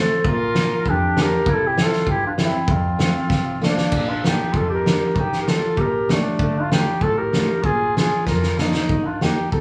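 A vibrato-rich, up-front flugelhorn carries the melody over a soft-attacked clarinet second line and a dark, fingerpicked jumbo steel-string guitar with audible finger squeaks, joined at 0.2 s by a punchy, gritty, saturated drum kit with a fat snare and dark cymbals, in this jolly, festive alpine dance-band tune at 97 BPM in a rubato 2/4 that moves from F major to Bb major at 3.9 s, with drum fills at 3.3 s and 8.3 s, the distant, roomy winds shaped in a classical style and the whole band playing live together in one room under a wet studio reverb.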